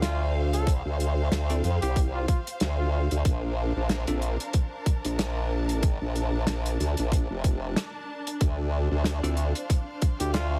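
A swung sixteenth-note groove in 4/4 drives this gritty, playful glitch hop piece, with a tight, layered electronic kick up front from 0.7 seconds over a soul drum kit of hi-hat, rim click and a medium-tuned snare with a rolled-off top. A wobbling formant-sweep bass with chorus and tube saturation sits prominently beneath a lush, bowed string section that pumps with sidechain, while a bell-like tine electric piano adds delayed stabs in the background and a dark, breathy jazz trumpet with delay carries the melody at the opening before returning briefly near 10.2 seconds. The chords move from Dm7 to Bbmaj7 and back, and the mix has a heavily compressed radio sound with small room ambience.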